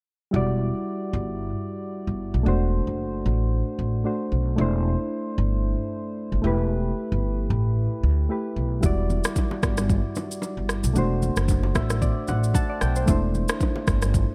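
Afrobeats with a mellow, hypnotic mood, heard here as a short section cut from a longer piece and carried by a gentle swing on the sixteenths. Soft, round electric-piano-like synth keys with a warbling chorus sit up front from the start, voicing rich minor-ninth and sixth chords over a steady E in the bass, and they add a brief fill at 11.5 seconds. An upright bass plays pizzicato alongside them, its woody, growly steel-string tone placed close to the listener. At 8.8 seconds an electronic afro-pop kit arrives with a deep kick, rim click and shaker, joined by very quiet, bright congas and bongos played with soft hands in a small room. The production is dark and warm, wrapped in a small-room ambience.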